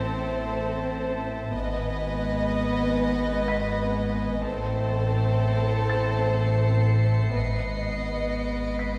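A cinematic suspense film score excerpt at 62 BPM in 3/4, ominous and mysterious, built on a slow rocking between A minor and G-sharp minor as a chamber violin section carries a soft, sul tasto melody with vibrato over a floating second violin line and an intimate viola section. Beneath them a dark cello section and a double bass section sit in the background, joined by a deep, clean sine sub bass drone, while an ethereal, beating glass harmonica holds sustained chords and a felt-muted upright piano adds a very quiet, mellow texture. At 4.4 seconds a distant, rich violin section enters high above, and the whole ensemble is heard from further back in a wet scoring-stage reverb.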